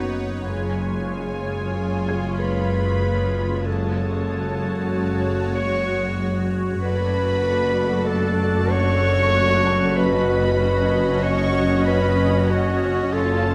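This cinematic suspense cue, cut from a longer piece in an uneasy, tense 5/4, sustains a shadowed string-and-woodwind texture over a held F# bass for its full 13.5 seconds. Muted symphonic violins carry the quiet, veiled melody, while a con sordino studio violin section adds a higher second line with soft attack and a warm classical clarinet shapes another second line below it with noticeably more presence. Beneath them a muted studio viola section fills in the accompaniment, and con sordino cellos and double basses anchor the low end, the basses sounding rich and lush. An evolving, detuned wavetable pad with slow attack, phaser and its own reverb holds bright sustained chords that drift from Badd9 through C# and D back to Badd9 over the F# pedal. At the edges of hearing, a felt-muted upright piano with audible action noise and a very quiet high violin texture add a faint, intimate shimmer until about 13.2 and 12.8 seconds, all set in a moderate scoring-stage reverb.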